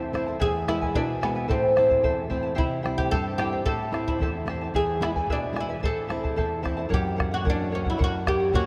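A straight 2/4 pulse at 111 BPM drives this melancholic, wistful Andean folk excerpt, with a deep, dark bombo entering at 0.2 s, close and dry. Up front, a mellow, woody fretless oud carries the melody over a fingerpicked flamenco guitar and a shimmering charango whose double strings are partly octave-doubled. The harmony moves through E, Am and C before turning to F# at 6.9 s, all set in a vast, echoing cathedral reverb.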